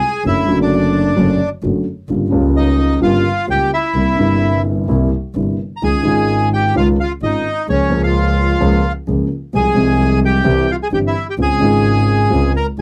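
A reedy, boxy bandoneon opens this dramatic, passionate tango excerpt with an up-front melody, joined within the first 0.3 seconds by a dark, mellow grand piano with deep bass and a single bowed double bass with a woody, nasal vibrato, all moving in a free rubato around 129 BPM through chords such as D/F#, Gm7b5, C7 and Dbmaj7 in a dry, close 1970s-style studio sound.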